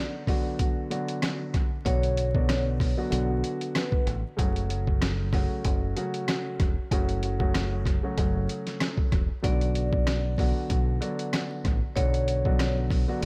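An echo-heavy mix dusted with vinyl crackle frames this gritty, reflective boom-bap hip-hop excerpt, where a dark, vintage baby grand piano carries the accompaniment up front, an airy vibraphone with soft mallets and slow motor vibrato rings out the melody in two brief phrases, an overdriven, compressed sampler-style drum kit thumps in at 0.3 seconds with kick, snare, rim click and hi-hat, and a round, punchy dub-style fingered electric bass joins at 1.9 seconds.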